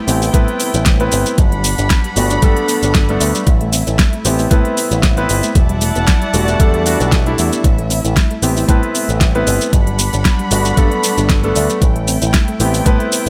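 A grand piano, a chamber string section bowing sustained chords with light vibrato, and a soft, round synth pluck playing arpeggios in the background open this sensual, sleek nu-disco excerpt, all three carrying sidechain pumping, with delay on the piano and chorus and delay on the dark pluck. A bright, punchy envelope-filtered electric bass and a pop drum kit with a fat snare, crisp hats and shaker join at 0.1 seconds, and a knocking electronic kick sits up front from 0.3 seconds. The chords cycle through Am7, Gmaj7 and Em11 in a dry, close-sounding mix with a gentle swing.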